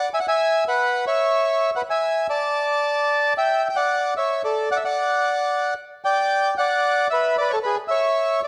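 A reedy, close-miked solo bandoneon carries this passionate, elegant tango fragment, sitting dry, full and up front as it ranges from G#4 to A5. The playing is rubato over a nominal 111 BPM in 4/4, tuned to A4 = 438 Hz, with harmony moving through Em13, D/A, Bm and E, interspersed with chordless stretches. A moderate recital hall ambience and a dark production frame the 8.5-second passage, which is cut from a longer piece.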